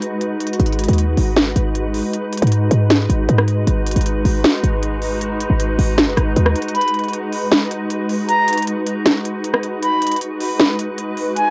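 Brooding and eerie, this half-time trap hip hop excerpt at 156 BPM in G# minor rests on a glassy, chorused FM pad holding a G#m7 chord through its built-in reverb and cassette tape grain, while an overdriven electronic trap kit of crisp hi-hats, rim clicks and a sharp snare sits up front, a punchy, tight 808-style bass plays from 0.6 to 6.5 seconds, and an airy silver concert flute with expressive vibrato and analog delay carries the second line from 6.8 seconds, all captured as a lightly reverberant home recording on cassette.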